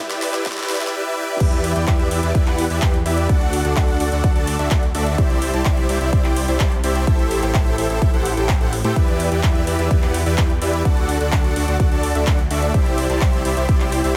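A brief build-up opens this euphoric, powerful festival progressive house excerpt: huge, bright supersaw chords and a thick, saturated detuned saw bass sound together with a big-room drum fill, and a punchy, up-front electronic kick joins at 0.5 seconds. At 1.4 seconds the drop arrives, with the lush, delayed chords and chorused bass both pumping against the kick while the kit adds a huge snare, handclaps, metallic hats and crash cymbals re-recorded in a small room. The mix has light digital ambience and a heavily compressed, radio-like sound.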